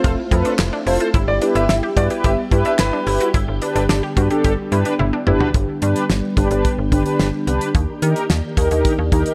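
Synth-pop at 109 BPM in G major, upbeat yet wistful, cut from a longer piece and driven by a dry, up-front 70s drum kit with a fat snare, tight kick, hi-hat, toms and handclaps, alongside a snappy, metallic slap-like FM bass. Mellow, brassy synth brass with chorus and vibrato carries the accompaniment over sustained, organ-like ensemble string chords treated with phaser, while a bright, detuned analog pluck plays arpeggios through chorus and digital delay until a drum fill leads into a new section at 5.5 seconds. A clear concert grand piano adds a brief second line with delay between 1.3 and 3.2 seconds as the harmony moves from Fmaj7 through Em/G and G to Ebmaj7, all set in a light small-room reverb.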